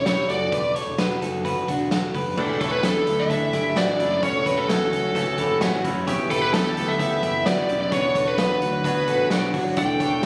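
Bittersweet and restless, this short cut from a longer jangly indie pop piece in straight 4/4 puts a smooth, overdriven lead guitar melody up front over slightly broken-up arpeggios from a bright guitar through a small old amp with tape echo, a round, foam-muted fingered bass and a punchy, gritty garage drum kit, with a twangy direct-recorded clean guitar joining at 2.4 s and warbling lo-fi synth keys with chorus slipping in at 9.8 s, the whole mix caught in light small-room ambience as if captured on a phone.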